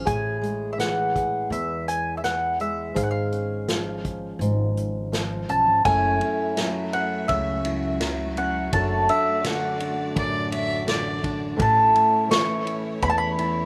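Gentle and unhurried, this short acoustic folk passage in A major moves at a relaxed 83 BPM in straight 4/4, cut from a longer piece. A woody, double-strung mandolin carries the melody up front, with a fingerpicked steel-string acoustic guitar of warm, fresh strings close beside it, while a dark, pizzicato upright bass and an unplugged drum kit played with bundle sticks sit further back, the kit sounding roomy and distant with dark cymbals, a tight kick and a medium-tuned snare. At 5.8 seconds the harmony shifts toward F#m7 and a soft-attack string section enters deep in the background, bowing expressive sustained chords with vibrato and portamento. Briefly, from 10.2 seconds, a single bowed fiddle with a reedy, gut-string tone and a smooth top adds a short second line up front, touched with slapback echo. The recording is dry and intimate, with little reverb.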